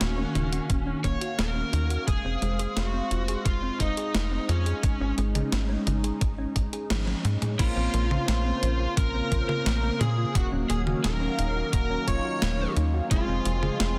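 Over a straight 87 BPM pulse in 4/4, a tight, punchy sequencer bass and a clean 12-bit drum machine with a medium-tuned snare drive this moody Bb minor synthwave excerpt, joined by a thumpy electronic kick from 0.7 seconds, while an overdriven guitar lead through tape echo rides a swirling phased pad and a tine-like background synth pluck, until a drum fill at 6.9 seconds ushers in an airy, dreamy second lead with vibrato and mellow, brassy synth stabs at 7.6 seconds, all under light reverb and a dense, heavily limited modern master.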